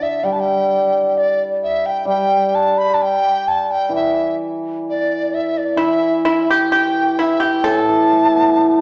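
A large dizi carries the melody in the upper register, its bamboo tone airy and mellow, with a buzzing membrane, gentle vibrato, soft attacks and rolled-off highs that make the line sound expressive and close at hand. Beneath it, a hammered dulcimer supplies the accompaniment from low to middle range, its struck strings shimmering and ringing throughout. At 5.8 seconds a pipa enters with a second line in a narrow middle register, plucked with fingerpicks for a dry, percussive, acoustic edge. This is a short fragment of a Chinese traditional chamber piece in 2/4, played with a loose, rubato feel that sounds both festive and pastoral. All three instruments sit up front, set in a recital hall whose reverb lends the ensemble an airy, resonant space.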